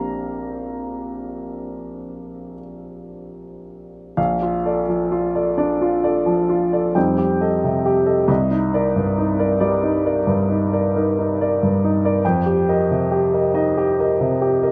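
Dreamy and hazy, this short excerpt from a longer impressionist solo piano piece drifts in 9/8 at a slow 36-48 BPM in Bb major, with free rubato phrasing. A clear, present grand piano sits up front, ranging from Bb1 to Bb5, and its long sustain lets the colourful harmonies ring. The opening Bb69 gives way at 4.2 s to a longer passage moving through Bbmaj7, F9 and Cm9 before settling on F9sus4, all in a light reverb with lossy compression artefacts.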